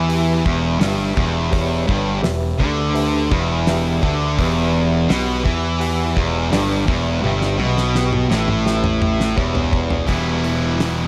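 A gritty, swaggering classic rock riff in E dorian at 84 BPM opens the excerpt, with a bright, up-front distorted electric guitar alongside a darker, sludgy distorted guitar over fuzz-picked electric bass and a damped 70s drum kit with a fat snare and tight kick. A barky, reedy electric piano with fast tremolo sits in the background, adding a fill from 3.0 to 4.4 seconds, while the drums play a fill from 7.2 to 10.1 seconds. At 10.1 seconds a shimmering, octave-doubled twelve-string acoustic guitar enters very quietly, all under light reverb on a steady E minor chord.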